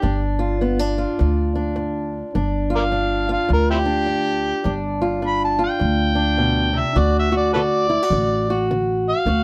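Acoustic country blues with a gritty, swaggering mood, this short excerpt moves at 104 BPM in 4/4 with a swung eighth-note feel. An amplified, overdriven harmonica carries the melody up front, its warm, gritty tone colored by light vibrato, tongue slaps and scooped notes in a jazz-inflected solo style. Beneath it, an old ladder-braced acoustic guitar is fingerpicked on aged strings, giving a boxy, woody accompaniment with a dark character. An upright bass played pizzicato on gut strings adds a thumpy low end, all three parts sounding together from the start to 9.4 seconds. The harmony sits on a G7 chord before moving to D at 7.0 seconds, and a light reverb gives the trio a sense of space.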